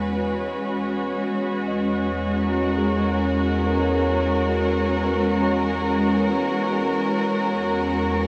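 A dark, bowed string section holds soft-edged sustained chords up front from the start, alongside a deep, ominous bass drone with its own reverb and a reedy, breathing harmonium drone. Very quiet, muted felt-like synth keys trace intimate arpeggios above them until 7.0 seconds. The peaceful ambient piece, cut from a longer work, floats in a wet shimmer reverb with a long tail.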